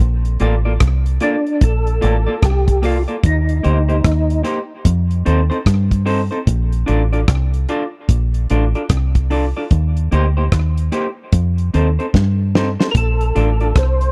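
A relaxed 74 BPM groove in 4/4, with 16ths swung at 63%, anchors this laid-back roots reggae excerpt in Bb major. A damped 1970s drum kit of hi-hat, tight kick, rim click and medium-tuned snare sits dry and up front, touched by slapback echo, and a drum fill arrives at 12.1 seconds. Beside it, a deep, round, punchy fingered electric bass with a foam-muted, dark tone carries the low end, while a clean semi-hollow guitar adds hollow-body accompaniment through dub echo. A mellow, percussive tonewheel organ takes the melody from 1.2 seconds and returns at 12.9 seconds, lightly overdriven and colored by chorus vibrato, slow rotary speaker and dub echo. The harmony cycles through Bbmaj7, Eb6 and F7, all captured in a close, dry studio sound of the 1970s.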